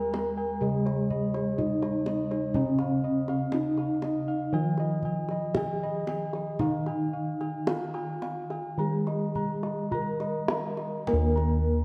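A pair of mellow bronze metallophones, struck with padded disc mallets, opens this shimmering, ceremonial Javanese gamelan excerpt in Eb slendro at a slow 51-62 BPM, with one carrying the melody and the other an octave-register accompaniment, their paired tuning producing shimmering beats. Bossed gongs join from the start: an airy upper set plays arpeggios touched by slapback echo, while a round, mid-forward lower set anchors the bass. A tight kendang played with soft hands enters at 0.1 s, and the whole sits in a dark production with moderate scoring-stage reverb.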